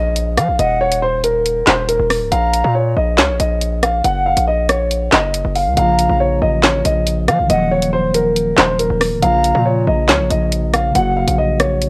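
A barely audible electronic impact opens this cold, tense drill excerpt at 0.0 seconds, as a dark, intimate concert grand piano carries the melody with audible action noise and a vintage cassette tape colour. A distorted 808-style bass sits up front beneath it, heavy and saturated with a noise layer and a fast attack, while the drill drum kit arrives at 0.2 seconds with a woody snare, rim clicks, handclaps and warm hi-hats in a half-time feel at 139 BPM. Far back in the mix, an airy wooden baroque flute plays a second line with vibrato and tongued notes, passed through cassette tape and tape echo. At 5.7 seconds a mellow, clean tine electric piano joins as accompaniment, sounding as if heard through its built-in speakers. Set in Bb minor and moving through Ebm, Bbm and Gb chords, the piece has the light reverb and lo-fi character of a home recording on cassette.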